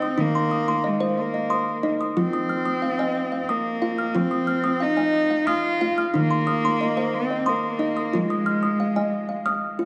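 A wet, echoing small-room sound frames this gentle, hypnotic world-meditative excerpt at 91 BPM in a straight 3/4, where a woody, fingertip-plucked kalimba spins soft arpeggios spanning Eb3 to F6 alongside a rich, smooth bowed cello melody with vibrato between Ab3 and F4, both up front and trailed by diffuse ambient delay over an F minor pentatonic setting tuned to A4 = 437 Hz, with the cello ending at 9.5 s.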